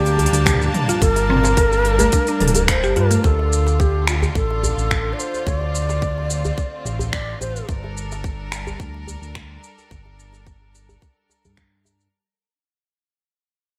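A straight 4/4 pulse at 108 BPM drives this hypnotic, earthy slice of organic downtempo, cut from a longer piece and tuned to A4 = 442 Hz. An organic electronic kit of finger snaps, crisp hi-hats, shaker and toms, bathed in gated reverb and re-recorded in a large room, enters at 0.1 seconds alongside a cracking, close and dry djembe played with soft hands that sits in the background, and a tight, tape-toned electronic kick joins them at 0.5 seconds. Underneath, a dark, up-front synth bass built from sawtooth and triangle tones glides with portamento and vibrato, its notch filter moving, tube saturation and sidechain pumping shaping its sustained notes. A woody, round FM pluck spins delayed, chorused arpeggios with a cassette-tape tint until 3.2 seconds, when the music shifts from Gm to Dm and begins a long fade-out. An airy, mellow low wooden flute in the Native American style carries the melody with soft attack, vibrato and digital delay until 7.7 seconds, as a clear, biting studio string section holds bowed chords with sidechain pumping through the close, all within a bright 1980s-style digital production with light reverb.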